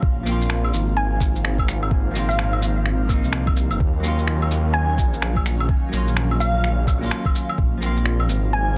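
This ghostly, wistful future garage excerpt in Bb minor opens with a thumpy, muffled, pitched-down kick up front and a menacing detuned saw bass whose filter swell and saturation give it an evolving edge. Alongside them come a dark, clean hollow-body electric guitar with subtle chorus and analog delay, and an airy, breathy pad in the background with chorus and phaser. Guitar, pad and bass pump with sidechain compression at 127 BPM in 4/4, with 61% swing on the sixteenths. From 0.3 seconds, compressed, sampler-style cabasa, shaker, finger snaps and claves join, re-recorded in a small room, with soft clipping on the snare. At 1.0 seconds a glassy, crystalline wavetable pluck takes the melody, colored by chorus, 12-bit sampler grit and tape echo. The harmony moves from Bbsus2 to Ebm7 and back, and the kick drops out at 7.7 seconds, all set in a digital ambience with a dense, heavily limited modern master.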